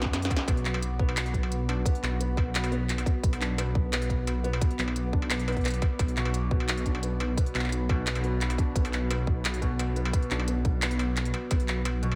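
A dark, detuned sawtooth bass sits up front, deep, rumbling and saturated with a beating edge, driving this tense, heavy half-time drum and bass drop at 174 BPM in B minor, cut from a longer piece. A tight, layered electronic kick and an industrial kit of clanging snare, crisp hats, handclaps and struck metal open with a drum fill, and the kick drops out at 10.8 seconds. Behind them, a moody ambient pad holds sustained chords with chorus, reverb and sidechain pumping, while a soft, intimate felt-muted upright piano plays arpeggios through tape echo.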